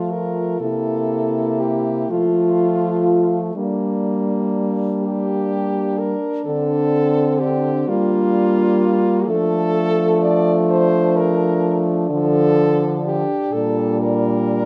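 Set in a moderate recital-hall reverb, this elegiac, solemn classical fragment for horn quartet moves in a rubato 6/8 at 42 BPM (dotted quarters), with a clear, vibrato-touched French horn carrying the melody up front, a dark horn with light vibrato and a smooth top singing the second line, and two warm horns filling out the accompaniment and a forward bass with light vibrato, as the harmony shifts from its opening F chords toward D minor at 9.3 s before the piece is cut off.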